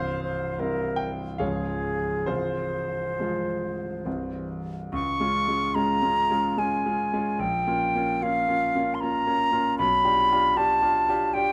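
In a rubato triple metre drifting between 64 and 81 BPM, this solemn, yearning romantic duo pairs a concert flute, pure and straight-toned with tongued notes, singing the melody up front from start to finish. A grand piano with deep bass and a smooth, vintage character accompanies it throughout, also close and present, while the harmony moves through C, Db and Fm/C before a second section from 4.9 seconds turns through Bbm toward G7/B. Detailed close microphones and light reverb frame this short passage cut from a longer piece, tuned slightly high at A4 = 441 Hz.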